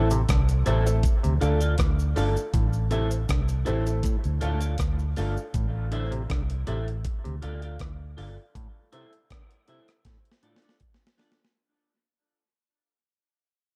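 A round, foam-muted electric bass sits up front in this hypnotic, heavy dub reggae cut at 80 BPM, moving between A minor and D minor under a gritty, compressed breakbeat-style kit with a thumpy kick, medium-tuned snare, rim click and hi-hat, plus a quiet cabasa in the background. A twangy, slightly broken-up electric guitar with analog chorus and dub echo plays accompaniment, a mellow, stringy clav plays phased arpeggios, and a woody, brilliant upright piano adds echoing stabs before dropping out as a break begins at 5.5 seconds. The bass stops at 8.4 seconds and a drum fill arrives at 10.1 seconds, all within a dark production with light reverb and a fade-out across this short excerpt from a longer piece.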